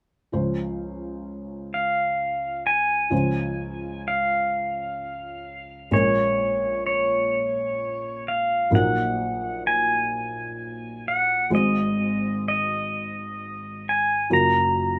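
Acoustic folk-pop ballad in a nostalgic, heartfelt mood, this excerpt moves slowly at 43 BPM in a straight 6/8 in Db major (tuned to A4 = 438 Hz), with a soft, mellow felt-muted upright piano, intimate and up front with audible action noise, laying down chords from Dbmaj7 through Bbm7, Ebm/Bb and Ab7 to Gbmaj7 from 0.3 seconds before a clean, twangy electric pedal steel guitar enters at 1.7 seconds to carry the high melody up front with fingerpicks, slide, volume swells and compression, all set in light reverb.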